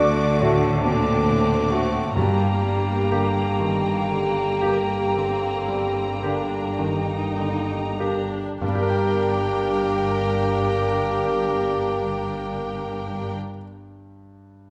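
Tragic and passionate, this slow, rubato classical fragment in 12/8 sets a clear grand piano melody against a rich, lush violin section singing high above. Meanwhile a smooth second violin line, dark cor anglais, pure silver flute and distant clarinet weave second lines over viola and bassoon accompaniment, mellow French horn chords, bowed cello and double bass, and very quiet round timpani entering at 2.2 seconds, all held in a reverberant recital hall. The music slows down through its first 8.6 seconds, and the piano carries on alone to the close.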